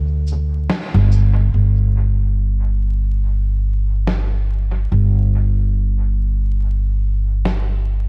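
Hazy and meditative, this short cut from a longer ambient dub piece moves at 71 BPM in 4/4 with a loose 16th-note swing, as an up-front, woody, growly pizzicato upright bass holds the low end from the start until 8.1 s beneath a quieter, muffled, tape-tinged electronic cabasa and snare drum that enters at 0.3 s trailing dub echo, with a band accent landing around 0.7 s and vinyl crackle laid over a dry sound.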